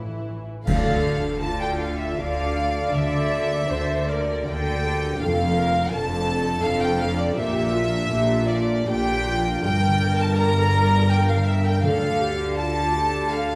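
Bathed in a wet hall reverb, this solemn, melancholic slow romantic orchestral movement in rubato triple time sets a pure, floating violin melody over dark violas, ringing harp arpeggios and warm double basses, with a second violin line and distant cellos joining at 0.7 seconds alongside a dry accent of dark clash cymbals, concert bass drum and round, soft-mallet timpani, the timpani alone returning at 11.8 seconds.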